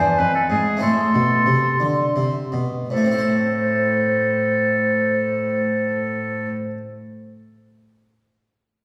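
A short excerpt from a baroque-style sonata movement in A minor opens with oboe, baroque flute, harpsichord and cello sounding together, the harmony moving from E to A minor at 0.8 seconds. The mood is grave and introspective, in a slow 6/8 lilt of dotted quarters at 53-66 BPM, and the tempo slows over the first 2.9 seconds before a new section begins. The oboe carries the melody with a clear, soft-attacked tone that sits both up front and roomy, while the baroque flute above it adds a pure, woody second line with a crisp attack. The harpsichord supplies an airy, plucked accompaniment in the Italian style, its full double-strung sound ringing on until 6.8 seconds, after the other parts stop at 6.5 seconds. Beneath it a single bowed cello gives a close, gut-string bass line with a reedy edge, all set in the generous reverberation of a church or concert hall.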